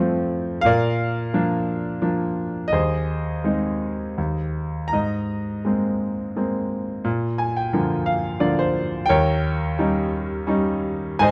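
A dark, warm production places a clear, vintage-toned concert grand piano up front in a small room with moderate reverb, giving this brief classical passage a sunny warmth. The solo piano plays a lyrical line in Ab major at 86 BPM in 3/4, with a rubato feel that lets the waltz-like metre breathe. Its smooth tone carries a deep bass and a short sustain, ranging from Eb2 up to Bb5. The harmony moves from F and Bb through Ab/Eb and an Abadd9 before returning to Bb. A piano fill from 7.1 to 9.1 seconds leads onto an Eb7, and the passage, cut from a longer piece, ends at 11.3 seconds.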